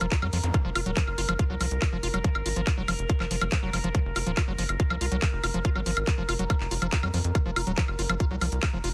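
Alien and intense, this cut from a psychedelic trance piece drives at 141 BPM in F phrygian with a tight electronic kick up front, a garage drum kit of handclaps, hi-hat and woodblock, a punchy sawtooth-and-square sequencer bass, a squelchy, gritty acid bass riff with distortion, dub echo and sidechain pumping, and a chorused overtone-sweeping drone holding sustained chords, while a very quiet electronic zap flickers at 0.4 seconds, all packed into a dense, heavily limited, dry master.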